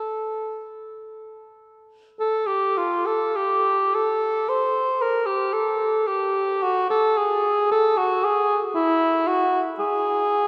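Meditative and lonely, this short classical fragment, cut from a longer piece, features a single cor anglais playing alone. Its mellow tone has a smooth top, and it moves freely in a rubato 4/4 that gives the phrasing an expressive, unhurried quality. The line stays within a compact span from E4 to C5. The instrument sits up front, while a long, wet cathedral reverb of about 5.2 seconds surrounds it and places the listener further back in the resonant space. A brief opening passage gives way at 2.2 seconds to a second section that carries on until the fragment ends at 10.5 seconds.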